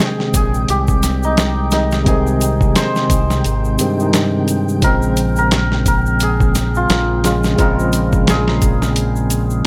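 A hypnotic, smoky trip hop groove opens at once, cut from a longer piece, with a hammered santur carrying the melody in a shimmering, ringing voice trailed by dub echo. Beneath it, a worn, slightly out-of-tune tine electric piano plays the accompaniment through its built-in speakers, colored by tremolo and tape echo. A dusty, sampler-style drum kit sits up front with a compressed, gritty sound, a thumpy kick and a medium-tuned snare in studio reverb, while a close egg shaker and group handclap add a lighter layer over the groove's swung sixteenth-note feel. A punchy, bright fingered electric bass enters at 0.3 seconds, direct and forward in the mix. In the background, a flickering, grainy granular texture holds a single detuned, slow-blooming tone, and the harmony moves from Ab/Bb to Bbm7 at 4.8 seconds within a digital ambience.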